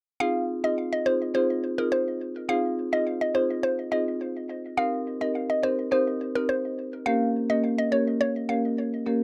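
A dark production with a moderate booth ambience frames this sultry, bouncy dancehall excerpt in F minor at 105 BPM, moving from Fm7 to Cm7 and then Gdim at 7.1 seconds. Up front, a woody, round synth pluck with an FM tone, a noise layer, a fast attack and a decaying body carries the melody through chorus, phaser and delay, stopping at 8.6 seconds. Beneath it, a marimba played with medium mallets adds a warm accompaniment and rings on alone until 9.2 seconds.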